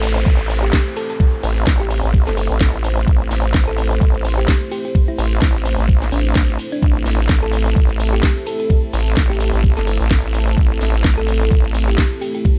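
Bass house with a bouncy, aggressive swagger, built on a swung sixteenth-note groove over a single A minor chord in this short excerpt cut from a longer piece. Up front, a knocking, tape-warm electronic kick drives things from 0.3 seconds, alongside a garage kit of cracking snare, metallic hats, ride cymbal and cabasa set in a small room. The vowel-sweep wobble bass dominates the low end with a nasal, resonant formant-filtered tone, compressed and chorused, pumping against the kick. Above it, a dark analog pad holds moody, detuned sawtooth chords with a slow attack and long release, also pumping to the sidechain. A round, tine-like thumb-piano pluck carries the melody in the background, its gentle FM notes trailing dub echo, while a downlifter and noise sweep appear at the opening until 3.1 seconds and again at the very end, all in a dry mix.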